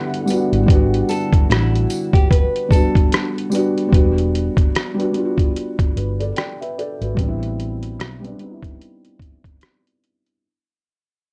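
A fingerpicked nylon-string guitar melody with audible finger squeak opens this nostalgic, reflective lo-fi hip hop fragment over a soft, boxy felt-muted upright piano with cassette tape character and a deep, detuned analog pad in the background, as a muffled, compressed sampler-style trip hop drum kit with a thumpy kick, a jingly, close tambourine and a round, punchy, foam-muted electric bass join in, the guitar stopping at 3.3 seconds before the piece fades out from 3.9 seconds under a worn, warbling tape sheen and light reverb while a filter sweep moves over the piano.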